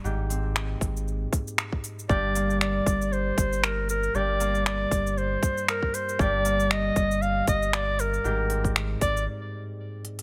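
Autumnal and wistful, this folktronica excerpt in G phrygian moves at 117 BPM with a gentle swing, as a ringing, fingerpicked concert harp spins delayed arpeggios over a deep, round sub bass and a tight, overdriven electronic kick. Finger snaps, crisp hi-hat and shaker from a small-room, overdriven drum kit sit up front. At 2.1 s a breathy, jazz-style clarinet enters with vibrato and scooped notes through a touch of delay, and the Abmaj7, Gm and Abmaj9 harmony gives way to a brief break at 9.3 s and a drum fill at 10.0 s, all under light reverb.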